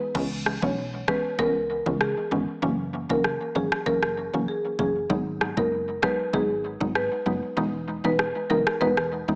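Dancehall at 97 BPM in C# dorian, bouncy and tough, this excerpt moves through C#m7, F#7, G#m7 and Emaj7 in an echo-heavy mix with light reverb and a low-pass filtered, small-speaker sound. An up-front electronic island pop kit with a knocking kick, rim clicks and crash cymbal sits beside a punchy, funky analog bass with a fast, decaying filter pluck, while a round, FM mallet-like synth pluck with chorus and tape echo carries the accompaniment. A woody marimba with medium hard mallets and a boxy small-room tone takes the melody through tape echo from 0.6 seconds, and the kick drops out from 7.6 seconds.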